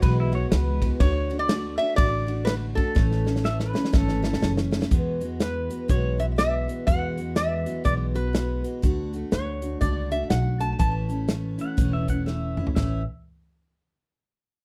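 Honky-tonk and classic country with a down-home, heartfelt swing, this excerpt puts a metallic, nasal lap resonator guitar up front on the melody, played with slide and fingerpicks and touched with slapback echo, while a clean, compressed pedal steel guitar adds a second line with volume swells, stepping out at 4.5 seconds and returning at 11.6 seconds. Underneath, a bright, picked dreadnought acoustic guitar plays the accompaniment, a woody pizzicato upright bass anchors the low end, and a polished, airy drum kit with a punchy kick and medium-tuned snare plays a fill at 3.0 seconds. The sound is dry and close, like a 1970s studio recording.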